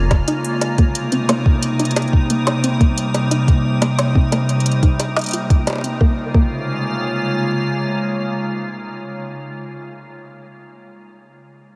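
IDM at 89 BPM in Bb dorian, eerie and intricate, set in a dreamy mix soaked in a huge ambient reverb, moving from Bbm7 to Cm7 and back to Bbm7 at 6.0 s. An icy, crystalline glass pad holds sustained chords up front with chorus until 9.5 s, over a soft electronic kick and an organic electronic kit of bongos, crisp hats and a woody snare with analog delay. A soft, round pluck plays dark arpeggios in the background through chorus, cassette tape and tape echo, with the drums and pluck dropping out by 6.5 s in this fragment of a longer piece.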